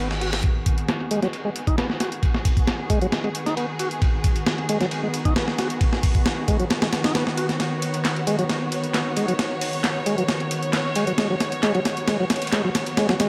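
A straight, driving breakbeat groove sets a swaggering, energetic mood in this breaks excerpt, carried by a gritty, compressed sampler-style drum kit with a thumpy kick, medium-tuned snare, hi-hat and ride cymbal, sitting up front with the sound of a small room around it. A punchy analog drum machine adds handclaps and hi-hat beneath, while a filter sweep runs across the drums as the whole passage builds, and a drum fill takes over from 7.6 seconds. A full, lightly overdriven tonewheel organ plays a riff through a slow rotary speaker, colored by vibrato, tape echo and a low-pass filter. Behind it, a dark, woody symphonic string section holds lush bowed chords from a distance, pumping against the beat, while a deep, saturated sub bass sits very quietly underneath on a G#m7 harmony. A faint reverse cymbal opens the clip and a riser returns at 11.9 seconds, all bathed in light digital ambience.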